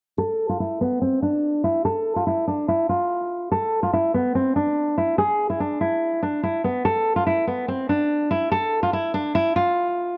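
Menacing and ominous, this half-time hip hop excerpt sets a lone fingerpicked nylon-string guitar up front, its bright, full-bodied classical tone and audible finger squeak carrying the melody through a low-pass filter sweep from 0.2 to 10.2 seconds, all caught in a dry, gritty hardware recording with small room ambience.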